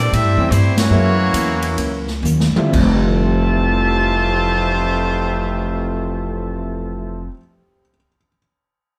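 A clear, tight trumpet section with vibrato carries the melody up front in this joyful, swinging big band jazz excerpt in F major, slowing within 115-160 BPM over a mellow, vintage-toned trombone section on the second line, a woody, growly pizzicato upright bass, a dark, clean hollow-body electric guitar and an intimate grand piano in the background, while a punchy big-band drum kit with bright cymbals marks a band accent at 0.7 seconds and plays a fill from 2.2 seconds before dropping out at 2.9 seconds, all played live in one room with a moderate stone reverb.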